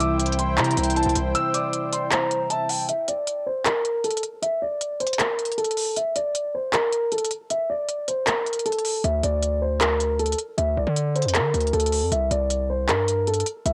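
Over a half-time trap beat at 156 BPM, crisp up-front hi-hats and handclaps back a brooding, dark baby grand piano melody filtered to a muted tone, while a gliding sine lead with vibrato, a phased tine electric piano and a detuned sawtooth pad share only the opening 2.9 seconds on a C chord, and a distorted, heavy 808 bass hits briefly at the start, drops out, then returns at 9.0 seconds beneath the cassette-worn home recording.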